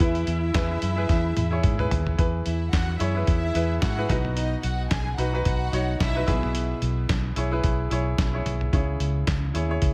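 Uplifting and warm, this piano-driven pop excerpt moves at 110 BPM in E major with a light swing, led by a clear, polished baby grand accompaniment over a round, punchy muted bass and a muffled, thumpy lo-fi sampler-style drum kit with handclaps, hi-hat, kick, snare and toms. A bright, twangy twelve-string electric guitar with warbly pitch drift and delay plays the melody in the background until 1.6 s, while a lush bowed violin section with vibrato and delay adds a second line until 6.4 s. A drum fill starting at 1.1 s leads into the next section as the chords move from E to B, E/B and C#m, set in light reverb and digital ambience.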